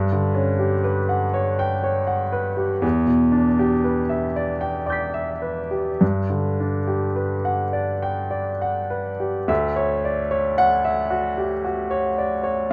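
A dark, warm studio sound with a moderate reverb frames this brief cut from a longer impressionist solo piano piece, with the instrument sitting up front. A single baby grand carries everything, its natural tone and long sustain giving the chords room to ring across a span from D2 to B6. The mood is luminous and serene, moving slowly in 3/4 at 49 to 64 BPM with a free, rubato feel in D major, tuned slightly low at A4 = 436 Hz. The harmony drifts through colourful extended chords, opening on Gmaj7#11, passing to Em7 and then Gmaj7. At 9.5 seconds a new section arrives on a glowing Dmaj9, which carries the passage to its close at 12.7 seconds.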